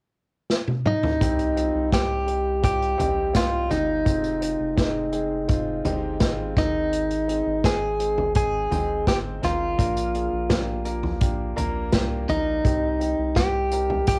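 Driving and earnest, this piano-driven pop excerpt in C minor moves at 84 BPM in a straight 4/4, opening with a roomy acoustic drum fill played with bundle sticks at 0.5 seconds, its punchy kick and medium-tuned snare sitting up front. A bright, compressed clean electric guitar carries the melody from 0.9 seconds, and at 1.2 seconds an intimate, woody upright piano with audible action noise joins a deep, dark, wave-folded analog bass as the chords move through Cm, Fm7, Ab and Bb. The whole home recording carries light reverb and a cassette-tape character on the drums, guitar and piano.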